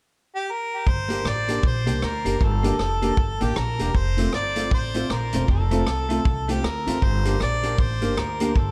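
A mellow harmonica carries the melody in this energetic, mischievous ska excerpt, entering alone at 0.3 seconds with a light vibrato and a punchy, roomy tone that sits up front, trailed by tape echo. At 156 BPM in 4/4 with a swung eighth-note feel, the tune settles into G minor as the upright bass and a vintage drum kit join at 0.9 seconds. The pizzicato bass is woody and close, while the natural studio-room kit of hi-hat, punchy kick and rim click has a rolled-off top. From 1.1 seconds a dark, slightly detuned upright piano adds boxy stabs with long sustain, and a clean, compressed hollow-body archtop guitar, miked through an amplifier, fills in the accompaniment from the background with its own tape echo. A light reverb gives the whole group a sense of space as the short cut runs out near 8.7 seconds.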